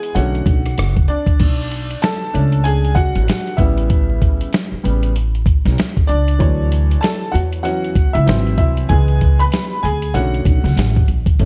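A swung 4/4 groove at 96 BPM, with a 60% swing on the sixteenths, drives this mellow, nocturnal slice of jazz-hop in B dorian, cut from a longer piece. A gritty, compressed sampler-style drum kit sits up front with a thumpy kick, medium-tuned snare, rim clicks, hi-hat and crash, its tape-tinged sound carrying the air of a large room. A woody pizzicato upright bass enters at 0.2 seconds, dark and thumpy on steel strings, holding the low end from F#1 to E2. Above them, a bright, slightly detuned upright piano with a worn, brilliant tone plays throughout, taking solo turns across the passage and moving through Bm9, A7, Dmaj9, G#aug7 and C#m7 before returning to Bm9 at 10.1 seconds. The production is dark and dry, rolled off at the top and dusted with vinyl crackle, giving the whole clip a late-night, lo-fi haze.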